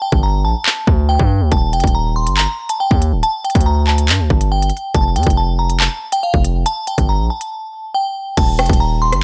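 Tense and ominous, this short excerpt of drill-style hip hop moves at 140 BPM in a half-time 4/4 feel, set in G minor with a dry, close sound. A crystalline FM synth bell carries the high melody, thickened by chorus, starting alone at 0.0 s before the saturated, heavy 808-style bass, with its gritty noise layer, fast attack and decaying tail, joins alongside the drums at 0.1 s. The up-front electronic kit hits with a hard-clipped kick, crisp hi-hats, handclaps, rim clicks and crash cymbal, all with a tape-like warmth, while the harmony moves through Eb, F and Gm.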